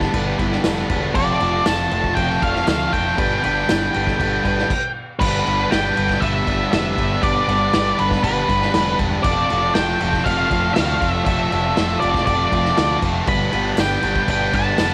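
Confident and driving, this classic rock excerpt is led by an up-front octave-fuzz lead guitar with slapback echo entering at 1.2 s over a bright overdriven guitar riff, a sludgy low guitar riff in the background, growling overdriven bass and a vintage drum kit with a punchy kick and dark cymbals in a pumping small room, while a clean lap steel with slide and volume swells plays a second line until a brief stop at 4.7 s, a very quiet phased string machine holds lush sustained chords, and a jingly tambourine sits back in the mix.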